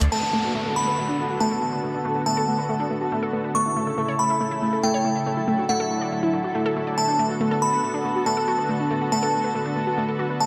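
A straight 4/4 pulse at 140 BPM drives this soaring, bittersweet trance excerpt in B minor, its chords moving from Bm7 to A, then Dadd9, and back to Bm7. A punchy, detuned sawtooth pluck spins arpeggios from A3 to E5 through a delay, its bright, fast-attack, decaying tone sharpened by a noise layer, a sub octave, ring modulation and a filter sweep. Above it, a glassy FM synth bell carries a crystalline second line between F#5 and C#6, sitting up front with chorus and dub echo. Beneath both, a thick, warbling, vintage-flavoured pad holds sustained chords from C#3 to A4, swelling in slowly and fading on a long release, shimmering with chorus. An electronic downlifter sinks through the opening until 3.5 seconds, and a moderate hall reverb with a 2.1-second tail lends the whole passage a spacious, lush glow.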